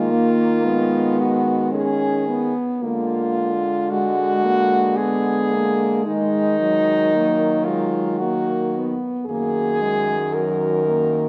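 A mellow, distant French horn carries the melody up front, roomy and clear, in this elegiac, yearning classical passage for horn quartet. Cut from a longer piece, it moves in a rubato 3/4 at 56 BPM in Eb minor. Beneath it, a second horn with light vibrato sits in the background on a supporting line, a third with a smooth top fills out the accompaniment, and a warm, vintage-toned horn with a soft attack anchors the bass. All four sound together in a moderate concert hall reverb as the harmony moves from Fm7b5/Eb through Bb7b13/D to Ebm and Ebm/Gb.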